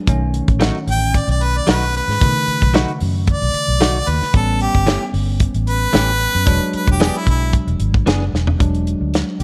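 A bright, close-miked harmonica takes the solo in this swaggering, gritty soul blues, entering at 0.9 seconds with soft attacks, light vibrato and scooped notes in a jazz-tinged style, sitting up front in the mix. Underneath, a bell-like tine electric piano washed in lush chorus supplies the accompaniment, while a clean, direct-recorded electric guitar adds compressed, picked stabs. A dark, round, foam-muted fingered electric bass anchors the low end, and an acoustic soul drum kit, dry and mid-forward with a tight kick, a medium-tuned snare and a rolled-off top, drives a straight 4/4 at 113 BPM, with a drum fill arriving at 8.3 seconds. The harmony moves through B7, A7 and E7, and a small room reverb lends the short excerpt a close, intimate feel.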